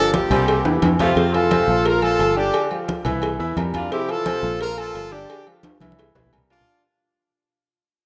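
A brilliant, punchy horn section leads this sunny, danceable salsa excerpt up front, joined in the first second by a very quiet, edgy saxophone section, while a bright grand piano with long sustain, a dark, round fingered electric bass, thin-skinned congas, a low-tuned cowbell, and ringing, saturated timbales and agogo bells carry the groove through Fmaj7, Bbmaj7 and C7 changes, with drum fills and a fade-out from 1.2 seconds, all bathed in a lush hall reverb within a rough home demo mix.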